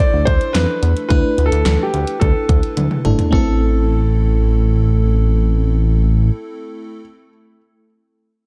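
A concert grand piano with audible action noise carries an intimate, smooth melody with a touch of delay over a lush, dreamy FM electric piano with a soft pad layer, chorus and tremolo, while a punchy, fat-snared pop drum kit drives this cool, melancholic synth-pop excerpt at 108 BPM in A minor; a glossy, detuned synth bass sits up front from 0.1 s, and the drums play a fill from 2.8 s and stop at 3.5 s as the harmony moves from Dsus2 to Am, all within a dark production with light reverb.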